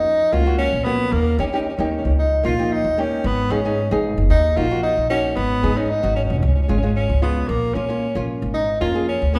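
A lush recital-hall reverb, lingering about 1.4 seconds, surrounds this short calypso clip recorded in a church or concert hall. A breathy tenor saxophone carries the melody in a jazz style, mellow and roomy, with light vibrato and scooped notes; it sits up front as the soloist yet keeps a distant glow from the space. Beneath it, a small, dark nylon-string guitar is fingerpicked as accompaniment, with an audible finger squeak. The upright bass is plucked pizzicato on steel strings, woody and up front. All three play together from start to finish over a carefree, sunny progression that moves from F#maj7 through D#7, G#m and C# to A#m7.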